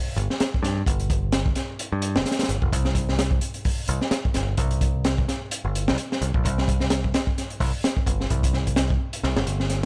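A crunchy breakbeat drum kit and a picked electric bass start together, driving an energetic, gritty breakbeat groove with a light sixteenth-note swing. The drums sound acoustic and dark, with a punchy kick, a high-tuned snare, hi-hat and a rolled-off top caught in a small room, while the bright, direct bass sits up front in a low register. Little reverb keeps this short cut from a longer piece dry and close.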